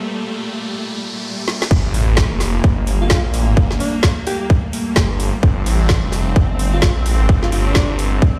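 Bass house at 129 BPM in G minor with a swung, swaggering and aggressive feel, cut from a longer piece, opens on smooth bowed strings pumping on a Gmadd9 chord under an electronic riser. A drum fill at 1.5 seconds leads into the drop at 1.7 seconds, where a tight, up-front kick, a garage kit with a woody snare and metallic hats, and a thick, swirling phased saw bass hit with an impact, and a raspy, growling alto saxophone solo with dub echo enters at 3.0 seconds, all ringing in a stone room through a big sound system.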